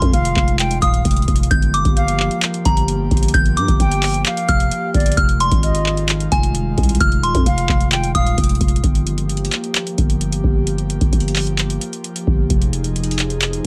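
Dark and melancholic, this half-time trap excerpt rides a booming, dry analog drum machine up front, with a deep kick, metallic hi-hats and handclaps over a growling, buzzy 808-style bass. A delicate, tinkling FM synth tine bell carries the warbling melody with chorus and tape echo, while a tongued concert flute with vibrato traces a second line through tape echo, both falling away by 8.8 seconds. Beneath them an airy, breathy pad with a soft noise layer sustains chords moving between Fm7 and Gm7 in a close, almost reverb-free sound.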